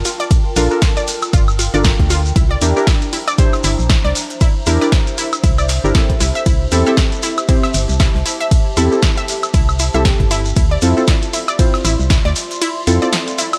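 Deep house with a warm, moody feel and a swung groove, this excerpt moves through Gm9, C9, Am7 and Dm9 as an up-front electronic kick and a hollow, organ-like FM bass anchor the low end, while a punchy analog drum machine adds hi-hat, ride, snare and woodblock, a very quiet gritty, pitched-up breakbeat kit tucks in behind, and a grainy shekere sits in the background. Deep, full-bodied chord stabs and a round, bright analog pluck playing arpeggios both carry chorus, analog delay and sidechain pumping, over a warbling, nostalgic lo-fi pad with a slow attack and long release. The kick drops out at 12.6 seconds, leaving the other parts to close the passage in a digital ambience.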